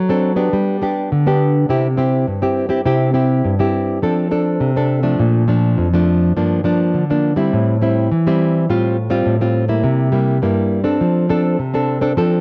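A straight 4/4 samba groove drives this festive, lively fragment from a longer piece, carried entirely by a lone nylon-string guitar fingerpicked in a dark, classical style and placed up front. Its chords move from an opening D7/F# through Bbmaj7, Gm7 and Am7 before C7 settles onto F6 at 11.0 seconds. The guitar carries a cassette-tape colour, and a moderate spring reverb with small-room ambience gives the homemade cassette recording an intimate, lo-fi character.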